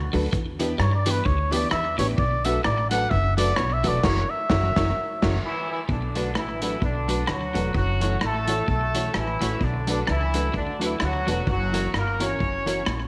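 Ska at 129 BPM in B minor, swung and buoyant with an energetic, mischievous streak, heard here as a cut from a longer piece. A breathy, intimate trumpet carries the opening melody up front with vibrato and a soft attack, taking the lead as a solo until 5.4 seconds, when a punchy horn section with octave doubling takes over the tune with a roomy, distant glow. Beneath it, an upright bass gives a woody, thumpy pizzicato bottom, while a vintage drum kit with muffled, dark cymbals, a tight kick, rim clicks and snare keeps the beat through a slapback echo. A bright, picked electric guitar plays a low riff with slapback echo, a dark, fingered electric guitar adds background accompaniment, and a jangly tack piano supplies metallic stabs. The band hits an accent between 4.0 and 5.9 seconds, and the chords move through Em7, Bm7, F#7 and F#m7 inside a moderate echo-chamber reverb.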